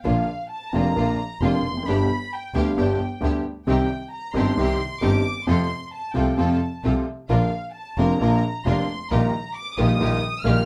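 A floating, sul tasto violin section carries a smooth, soft-attack solo line in a high register through this sultry, melancholic tango excerpt at 133 BPM, played rubato in 4/4 and Bb major, while a present, polished baby grand piano with short sustain accompanies up front, a clear string section adds bowed stabs, and a single focused double bass, bowed with vibrato, anchors the low end inside a moderate studio reverb.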